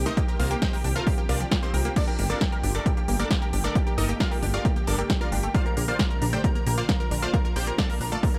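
A straight 4/4 pulse drives this soaring, euphoric slice of uplifting trance, built on a punchy, overdriven electronic kick that sits up front and a big-room kit of crisp hats, snare and crash, both re-recorded in a large room. Underneath, a plucky analog bass mixes sawtooth, pulse and sine tones into a funky, mellow low end with a fast, decaying filter pluck and sidechain pumping. The main melody is a lush, detuned unison pluck with a bright filter sweep, phaser and delay, joined higher up by a catchy square-wave unison lead that carries a cassette-tape grit, a noise layer and a sub octave further back in the mix. A tight, driving sequenced synth runs arpeggios in the background through chorus, phaser and delay, while a very quiet, ethereal pad shimmers with an octave-up granular sheen and a long release. The harmony moves from Cm7 to Gmadd9 at 2.0 seconds and to Bbadd9 at 5.5 seconds, all within a brief cut from a longer piece bathed in digital ambience.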